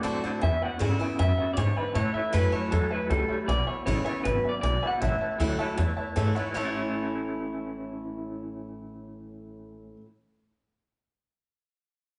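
A roomy, live-in-one-room sound with a moderate studio reverb frames this rollicking, retro rockabilly excerpt in A major at 157 BPM, where a twangy, slightly broken-up electric guitar through a small old amp carries the melody over a second electric guitar's tremolo riff, a boxy parlour acoustic guitar, a jangly, detuned honky-tonk upright piano in the background, and a thumpy, woody upright bass up front, moving between E7 and A chords.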